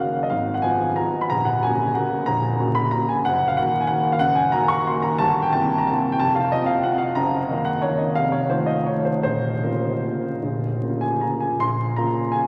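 A vintage, crackling sound bathed in a cathedral's long, wet reverb frames this wistful, elegant classical waltz in a supple rubato three, where a smooth, up-front grand piano plays alone from the first moment to 12.5 seconds, spanning from the deepest bass to the upper treble as its minor-key harmonies settle onto the home chord at 9.2 seconds in this short cut from a longer piece.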